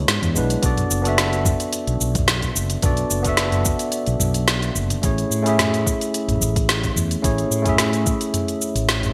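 Bright 1980s-style digital production bathed in a lush hall reverb frames this relaxed sunset chillout fragment at 109 BPM with a light swing on the 16ths. An up-front, clean tine electric piano through a combo amp, with digital delay, moves over E7, Bm7 and Amaj7 chords, while a dark, round, amped fretless bass sits beneath it. A smooth R&B kit of cabasa, hi-hat, woody snare and toms carries gated reverb and tape-warm color, and a soft electronic kick joins at 0.6 s.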